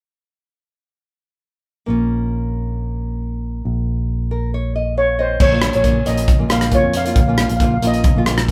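Calypso at 136 BPM with a carefree, sunny mood, cut from a longer piece and played live in one room with moderate studio ambience: a small fingerpicked nylon-string guitar and a dark, round, up-front electric bass open on a Bb minor chord at 1.9 seconds, the guitar adds a fill, a shimmering, airy steel pan played with soft rubber sticks takes the mellow lead from 5.0 seconds, and at 5.4 seconds a punchy, up-front drum kit joins with crash cymbal, hi-hat, kick drum and rim click.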